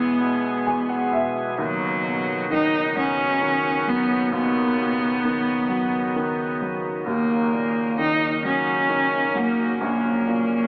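Soaked in church reverb with a dreamy, AM-radio haze, this fragment of a dramatic, melancholic six-eight pop ballad places a smooth, vibrato-rich bowed cello up front on the melody, while a polished baby grand piano accompanies with a fill from 0.2 to 1.6 seconds and a reedy, key-clicking tonewheel organ holds sustained chords through a slow rotary speaker.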